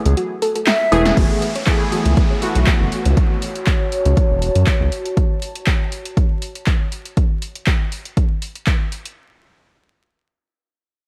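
Deep house with a warm, moody feel, cut from a longer piece: a round, deep analog bass pumps beneath an overdriven drum machine of snare, handclaps, hi-hat, woodblock and crash, while a soft pluck arpeggio and a brief breathy jazz flute note sit in the background with analog delay, airy detuned keys stab over an F#m11 chord, an up-front punchy kick arrives at 1.2 seconds after a drum fill, and a faint downlifter, a warbly lo-fi tape-like pad from 3.0 seconds and vinyl crackle fill out the nostalgic haze.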